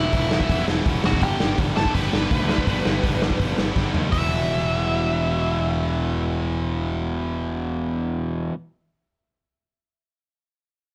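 Raw and aggressive, this short punk rock excerpt charges along at 165 BPM in a straight 4/4, sitting in E minor and moving from Em to G before returning to Em at 4.1 seconds. A raw garage drum kit, up front with a punchy kick, medium-tuned snare, hi-hat and toms, plays in a bright stone room with a smooth, rolled-off top, landing a fill just before it stops at 4.2 seconds. Underneath, a fuzz-driven picked electric bass growls through the low end, while a tight, bright distorted guitar and a sludgy overdriven guitar tucked in the background both drive the riff. Over them, a nasal lead guitar with a parked wah carries the melody in a dark, overdriven tone touched with delay, ending at 7.8 seconds as the guitars and bass hold on to the close. A light reverb gives the whole a rough, live-room edge.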